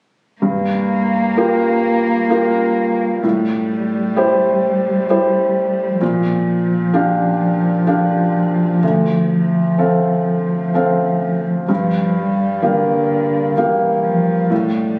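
Captured on a phone in the room with club-like reverb over a moderate 2.0-second stage tail, this melancholic, reflective neoclassical fragment, cut from a longer piece, drifts at a rubato 64 BPM in 3/4 in G dorian: a felt-muted upright piano with a mellow, vintage tone carries the accompaniment up front, while a single dark cello, bowed sul tasto with vibrato and a soft attack, plays the second line, both playing from 0.4 to 15.0 seconds over Gm7, Am7, Gm7/Bb, Dm7 and back to Gm7.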